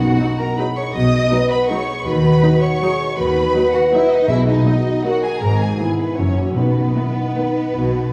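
In a lilting three-beat waltz with uneven, rubato-stretched beats, this elegant and festive orchestral ballroom passage sways freely. Bowed violins carry a lush, focused melody with vibrato, while a second violin line with a soft attack sings expressively beneath it. Mellow French horns hold sustained chords, a ringing concert harp fingerpicks arpeggios in the background, and a distant chamber viola section adds accompaniment from 0.2 s. Cellos with a smooth, even tone and a woody double bass section anchor the bass, and very quiet timpani with calf heads sound a low B at the start before returning at 4.3 s. A wet scoring-stage reverb lends the ensemble a generous glow, and the harmony leans on a tense dominant chord before settling home at 6.6 s in this brief slice cut from a longer piece.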